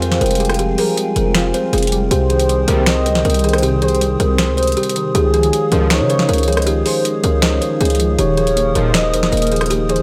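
Hip hop trap excerpt in F minor at 158 BPM with a half-time feel, hard-hitting and eerie, where a buzzing, woody kalimba carries the melody over a smooth, detuned gliding portamento lead with tape echo, mellow chorus-and-phaser electric-piano-like synth keys, a nostalgic warbling tape-like pad sitting dark in the background, an aggressive distorted 808-style bass up front, and a booming analog drum machine with crisp snare, metallic hats, finger snaps and rim clicks, while fat, brassy analog synth brass stabs punch in at 2.7, 5.7 and 8.8 seconds across an Fmadd9, Cm, Dbadd9, Ebsus2 progression in a dry, gritty recording with light digital ambience.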